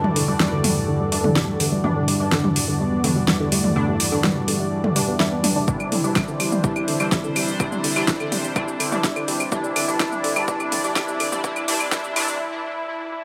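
Cinematic and hypnotic, this melodic techno excerpt moves at 125 BPM in a straight 4/4, building steadily from an Em7 chord into Cadd9/E under a long filter sweep. A thick, detuned sawtooth unison lead with a dark sub-octave and vibrato carries the melody through tape echo. A woody, wave-folded pluck spins mellow arpeggios with a lush chorus and delay, its own filter sweeping across the build. An edgy sync-sweep polysynth punches nasal sawtooth stabs with a moving notch, while a bright, resonant pad evolves slowly in sustained chords beneath. A fat, overdriven deep house kit of claves, metallic hats, shaker, snare and toms sits up front, joined at 5.7 seconds by a punchy, tape-warm analog kick. Sidechain pumping breathes through the synth parts, a huge ambient reverb with a long tail bathes the sound, and a brief break arrives at 12.4 seconds as the lead rings on alone.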